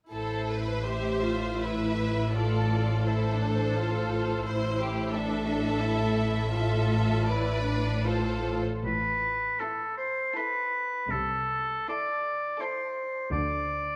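A moderate concert-hall reverb surrounds this solemn, melancholic fragment of a longer classical work, which moves in a flexible, rubato triple metre. One violin section carries the melody with an intense, lush vibrato, while a second violin section adds a focused second line and the violas fill in a rich, smooth accompaniment. Cellos and double basses share the bass line, the cellos clear and the basses even, both sounding somewhat distant. The harmony shifts between A minor and D minor over an A. At 8.8 s, as a new section begins, a solo oboe enters with a soft attack and a roomy, classical tone, adding its own second line. The lower strings stop at 13.9 s, and the oboe holds on until the fragment ends at 14.0 s.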